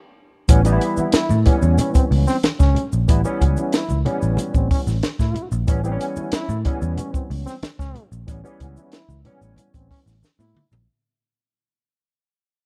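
Strutting and gritty, this funk fragment opens on a band accent before a fade-out carries the rest, with a compact cocktail kit's punchy kick and high-tuned snare sitting up front beside a dark, round, foam-muted electric bass. A barky tine electric piano, lightly overdriven and chorused through a combo amp, plays stabs over an A9 chord, while a mellow, breathy trombone enters at 1.0 seconds with scooped notes in a jazz-style second line. Low-tuned, softly played congas sit very quietly and a grainy tube shaker stays in the background of a dry, close 1970s-style small room, and a drum fill closes the piece from 10.2 seconds.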